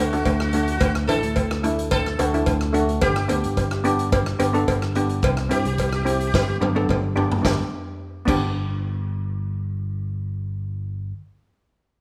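Bright, metallic steel pan sits up front in this bouncy, festive calypso excerpt at 108 BPM in G major, played with hard rubber sticks on double seconds across a range from A3 to A4. A plectrum-plucked sitar carries the melody between F#4 and A4, its buzzing sympathetic strings lending a shimmering edge, until it drops out at 6.6 seconds. Underneath, a punchy fingered electric bass, direct and amped and also up front, holds the low end from G1 to G2 through the chords D, G, C and back to G. A street-band drum kit with a boomy kick, medium-tuned snare, dark cymbals and an airy big-room sound drives the straight 4/4 feel alongside a compressed, saturated cowbell, with a drum fill at 6.3 seconds before both stop at 8.4 seconds. The whole piece comes across as a rough home demo mix with light reverb and small room ambience.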